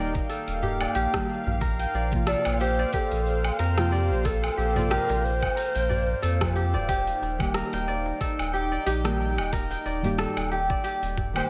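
Bathed in light digital ambience, this meditative, hypnotic organic downtempo excerpt moves at 91 BPM with a swung 16th-note feel over an Eb chord: dark, warbling chord stabs with chorus, digital delay and sidechain pumping sit beside a smooth, detuned pad carrying vintage 12-bit sampler grit, a crisp, ringing kora plays delayed arpeggios, and a round sine sub bass sits up front, while a gritty, thumpy electronic kick and an overdriven deep house kit with metallic hats, rim click, shaker and woodblock are joined by a very quiet, close and dry clay darbuka, and a breathy low Native American-style wooden flute with vibrato and chiff carries the melody from 2.3 to 6.6 seconds.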